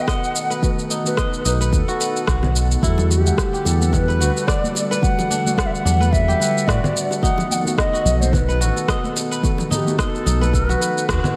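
Organic downtempo in E minor at 109 BPM with a lightly swung 16th-note feel, this mystical, earthy excerpt sets a distant, mellow cedar flute with vibrato and a slapback delay over crisp, ringing fingerpicked kora arpeggios with tape echo, dark felt-muted synth keys, and a warbling lo-fi pad that sits in the background, the keys and pad both pulsing with sidechain pumping. A deep electronic kick, rim click, shaker and congas begin at 0.1 seconds, a smooth, up-front synth bass with tube saturation joins at 1.5 seconds, and bright, compressed congas and bongos murmur behind from 3.0 seconds. The harmony moves from B7 to Em11 and back under a lush hall reverb that gives a big arena sound, and the band hits an accent at 11.1 seconds.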